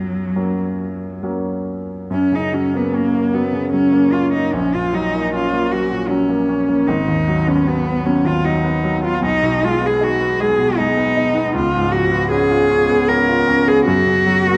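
A rich, bowed cello sings a smooth, lyrical melody with vibrato over a bright grand piano's brilliant, long-sustained accompaniment in this serene romantic classical excerpt in F# major, moving at a gentle 77 BPM in 3/4 with free, rubato timing, both instruments up front in a dark production bathed in a wet recital hall reverb as the harmony settles from F# through G#m7 and C#7 back home to F#.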